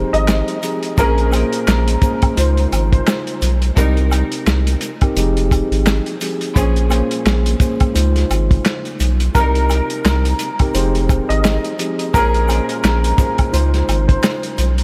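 A boom-bap hip-hop groove at 86 BPM in 4/4 swings its sixteenths, driven by an acoustic soul drum kit that sits up front with a tight kick, a medium-tuned snare, hi-hat and handclaps, all dry, muffled and lo-fi with a rolled-off top. Beneath it, a soft dub sub bass holds the low end with a deep, round tone and fast attack, while an egg shaker and woodblock tick close and dry in the background. A mellow tine electric piano carries the chords through F minor changes of Fm7, Bbm7, Dbmaj7 and Cm7, its clean tone heard as if through built-in speakers. A dark, woody upright piano with audible action noise plays the melody at the opening and again from 9.3 to 14.4 seconds, colored by ensemble chorus and a diffuse ambient delay. A very quiet chamber string section adds smooth, bowed stabs with light vibrato from 1.0 to 12.4 seconds, and the whole moody, tough passage, cut from a longer piece, is soaked in a huge, dreamy reverb.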